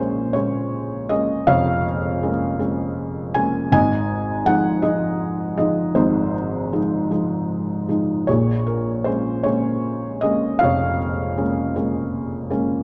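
Classical, lyrical solo piano in a calm mood, this excerpt from a longer piece moves at 53 BPM in 6/8 with a rubato feel, as a single felt-muted upright piano, tuned to A4 = 439 Hz, sits up front with a soft, mellow, intimate tone across a range from F1 to Ab5, drifting from Bbm7 to Fm7/Ab and back to Bbm7 within a moderate recital hall reverb and a dark, warm production.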